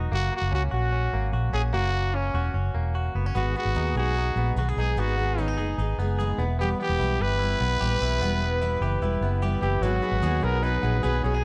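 A dark, lightly reverberant production frames this breezy, nostalgic indie pop excerpt, with a round, punchy foam-muted bass sitting up front beneath twangy, compressed arpeggios from a clean, direct-recorded electric guitar. A raspy, growling trumpet with light vibrato carries the melody from the start, and a shimmering, octave-doubled twelve-string acoustic guitar adds picked accompaniment from 3.3 seconds. The harmony moves from F# through G#m and Em, and a very quiet, buzzy overdriven combo organ slips in at 9.8 seconds as it arrives on G#m7.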